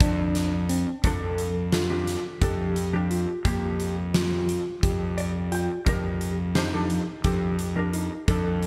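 A driving 7/8 pulse at 174 BPM in eighths, played straight, anchors this bright progressive instrumental excerpt in F mixolydian, tuned to A4 = 444 Hz. A huge arena drum kit sits up front with hi-hat, a punchy kick and a fat snare, its airy, polished sound bathed in gated reverb. Beneath it a fuzz fingered electric bass holds F2, overdriven and round, also pushed forward in the mix. A tine electric piano spins clean arpeggios through its built-in speakers with delay. A dark, compressed hollow-body jazz guitar, double-tracked, supplies accompaniment and adds a fill from 4.8 to 5.9 seconds, while the harmony moves from F5 and F6 to Gm7/F at 3.5 seconds and Ebmaj7/F at 5.9 seconds. A light small-room ambience frames the bright 1980s-style digital production.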